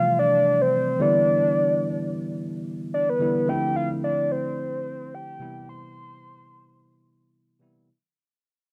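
A soft, octave-layered synth lead and a tine electric piano open together on this hypnotic, soulful amapiano excerpt, with a lightly swung sixteenth-note feel and the whole passage fading out across its length. The lead carries the melody up front with a round, dark tone stacked over a sub octave, colored by chorus, vibrato and tape echo, and it drops out at 7.3 seconds. The clean, combo-amp piano accompanies through a cassette-tape haze over Fmaj9, Em7, Dm9 and Cmaj7 until 7.9 seconds, and a short, wet studio reverb on a home cassette recording gives the piece a homespun character.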